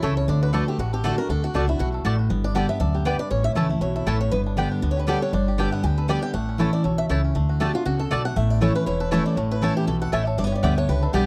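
This rustic, driving bluegrass excerpt opens with the whole band already in motion at 238 BPM, swinging its eighth notes over an A mixolydian groove. Up front, a woody, thumpy upright bass with gut strings carries the low end, while a full-bodied steel-string dreadnought guitar with fresh strings picks a steady accompaniment. Two melody voices ride on top: a twangy, percussive banjo played with fingerpicks sits fairly low in the mix, and a boxy swing-style guitar, its finger squeak audible and a slapback echo trailing its lines, reaches higher. A double-strung mandolin punctuates the texture with picked stabs. The chords move among D, G and A, and a new section begins at 7.4 seconds, leading to G at 10.4 seconds before the cut at 11.3 seconds. The sound is dry and close, with little reverb, much like a 1970s studio session.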